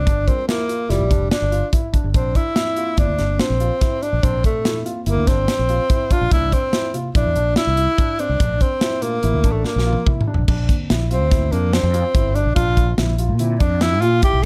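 A tenor saxophone leads this intricate, driving progressive instrumental in 5/4, its soft-attacked, vibrato-laden tone sitting up front before it takes a solo at 10.5 s. A fretless electric bass with ensemble chorus and a polished studio drum kit, with its punchy kick and bright cymbals, push the groove, and the drums play a fill from 9.7 s. Behind them, a dark, intimate concert grand piano plays arpeggios with audible action noise, while a mellow tine electric piano with lush chorus rests in the background under light reverb, all in a short cut from a longer piece.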